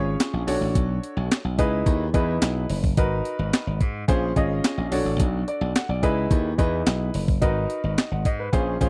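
This short excerpt of early-eighties boogie funk opens with a clear grand piano and a slap bass sounding together from the very start, setting a late-night, funky mood at 108 BPM in a straight 4/4. The piano plays accompaniment in an intimate, natural tone with audible action noise, while the electric slap bass sits up front, bright, punchy and direct. At 0.2 seconds a clean 12-bit digital drum machine joins with a thumpy kick, a medium-tuned snare, hi-hat and handclaps, its sampler-style hits overdriven and re-recorded in a large room so they stand out slightly louder than the other parts. The harmony moves through lush minor ninth chords, cycling from Bm9 to C#m9, G#m9 and A#m9 before returning to Bm9 and C#m9 and landing on G#m9. The overall sound is dry and close, in the manner of a 1970s-style studio recording, with all three parts placed up front.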